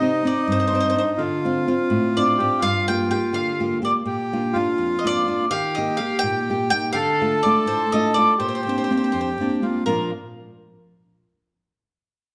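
A bright bowl-back mandolin, a reedy accordion and a fingerpicked nylon-string guitar start together at once in this sunny, lively Italian folk serenade, cut from a longer piece. It moves in a loose, rubato 6/8 at about 83 beats per minute, counted in dotted quarters, and sits in B-flat major with tuning slightly above standard pitch. The mandolin carries the melody with a picked, double-string ring, while the accordion adds a full, dark second line with smooth, dry tuning. Underneath, the classical guitar gives warm accompaniment, and each of the three parts sits up front in a wet recital-hall reverb. The harmony passes through chords such as C minor with an added ninth, D minor 7, G minor 7 and E-flat before settling on B-flat near 9.9 seconds, and the three instruments stop at 10.1 seconds.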